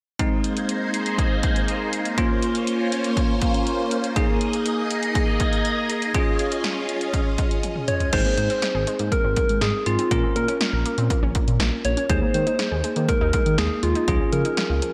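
A punchy, dry analog drum machine drives this bright, nostalgic synth-pop piece at 121 BPM in a straight 4/4, its kick, snare, hi-hat, toms and crash sitting up front. In Ab major, a clean, bell-like tine electric piano carries the accompaniment throughout, while a swirling vintage string machine, colored by ensemble chorus and phaser, holds sustained chords over Abadd9, Bbmadd9, Ebsus4 and Dbadd9. After a drum fill at 7.6 seconds, a gentle, warbling FM synth lead with chorus and delay takes the melody from 7.9 seconds. At 8.1 seconds the string machine drops out as a smooth, mellow sawtooth bass with vibrato enters, along with a round, detuned analog pluck playing arpeggios in the background through chorus and delay. A lush hall reverb soaks the whole mix in a dreamy digital ambience, and this short cut from a longer piece closes on a Db chord.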